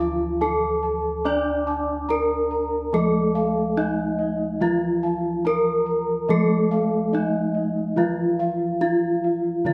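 Javanese gamelan at a stately 71 BPM in 4/4, this short, hypnotic passage cut from a longer piece keeps all five parts sounding together from 0.0 to 9.7 seconds. A bronze metallophone struck with a wooden mallet carries the melody up front, its paired tuning producing shimmering beats over a ringing, metallic tone. Beneath it a second metallophone, also wooden-mallet struck, plays the accompaniment in a lower register. Higher up, a metallophone played with padded disc mallets sits mid-forward with a mellow, soft voice and spins arpeggios alongside a set of bossed gongs whose round, airy strokes trace their own arpeggios. Deeper bossed gongs, struck with padded beaters, hold the bass with a beating bronze resonance. The ensemble plays live in one room, bathed in a wet large-studio reverb that lets the bronze tones bloom and overlap.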